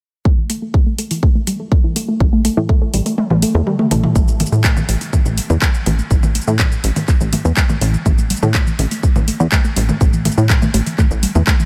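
Driving and cinematic, this melodic techno cut, taken from a longer piece, moves in a straight 4/4 pulse. A tight, nasal sequenced synth carries the arpeggios throughout, its detuned sawtooth and pulse-wave tones given a filter pluck, chorus, tape echo and sidechain pumping, with a filter sweep running over the sound. A punchy, layered electronic kick sits up front, joined by a house drum kit of congas, handclaps, metallic hats, shaker and toms. A funky, wave-folded analog bass enters at 2.2 seconds with a fast-attack pluck that decays, shaped by sidechain pumping. The kick drops out from 3.2 to 4.2 seconds while a drum fill leads into the second section, after which the full groove returns under a light reverb.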